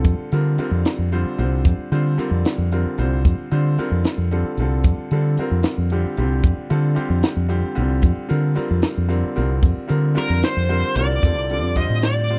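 Slick and bright, this short excerpt of electric jazz fusion in a straight 6/8 sets a brilliant grand piano, played under the rest, over a round, punchy fingered electric bass and a crisp drum kit with a high-tuned snare and tight kick, with a smooth overdriven lead guitar arriving at 10.2 seconds in a dry, close 1970s-style studio sound.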